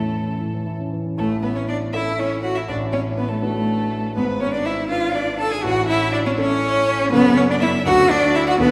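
Set in a straight, quick 6/8 pulse, this lively and graceful passage from a classical-period piano trio movement is cut from a longer piece. A bowed solo violin carries the melody with a rich, smooth, even tone and vibrato, its upper notes staying polished. A single cello plays the second line in a clear, focused voice with vibrato; it is placed close and up front and sits louder in the balance than the violin. The grand piano gives a warm, open accompaniment with long sustain. It is also up front and reaches from deep bass notes into the middle register. All three play together throughout, and the harmony passes through a darkening diminished chord near 4.2 seconds before settling back on its home chord and moving on. A generous concert-hall reverb with a 1.8-second decay wraps the trio in a wet, spacious ambience.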